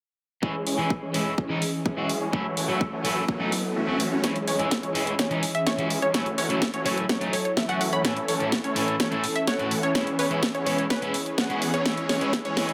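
A slightly broken-up electric guitar sits up front with spring reverb and dub echo, pumping against a punchy, tape-warm kick and a house kit with a cracking snare in this euphoric, anthemic festival progressive house excerpt at 126 BPM in C# minor, where huge, bright supersaw chords pass through phaser and low-pass filtering over a lush, chorused pad moving from C#m through F#m7, A and E6. A very quiet riser rises from 2.1 to 4.2 seconds as the kick drops out briefly, and at 4.2 seconds a build-up begins with a drum fill, filter sweeps, a thick detuned saw bass and a catchy plucky lead arpeggiating in the background. A glassy, crystalline wavetable pluck carries the melody from 5.5 to 11.6 seconds before the riser returns near the end of this cut from a longer piece.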